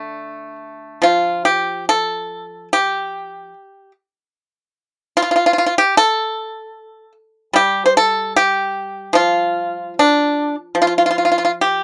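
A solo pipa, bright and percussive and played with fingerpicks, sits up front through this elegant, longing passage of Chinese traditional music, cut from a longer piece. It moves at about 74 BPM in 4/4 with a free, rubato feel and uneven beats, ranging from D3 to C5 and shifting into a new section at 1.0 seconds that carries on to 11.8 seconds. The sound is dry and close, with a 1970s studio character and a light touch of reverb.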